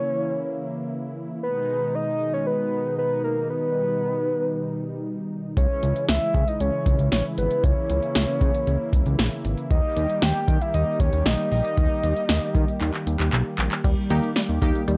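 A mellow, round synth lead with a warbling vintage vibrato and a sub-octave layer opens this driving, melancholic synth-pop excerpt, carried over a bold, brassy analog pad with a soft attack and chorus shimmer. At 5.6 seconds a fat, saturated sawtooth bass and an electro analog drum machine arrive up front, with a deep kick, punchy snare, handclaps, metallic hi-hats and a crash cymbal. The harmony moves through minor chords before shifting to a major chord, and a drum fill at 12.8 seconds leads into a new section. There, at 13.8 seconds, a lush unison pluck plays arpeggios through tape echo, and a funky, detuned polysynth comp with chorus adds a brief burst just before the close. The sound is dry and gritty, with the character of cassette tape.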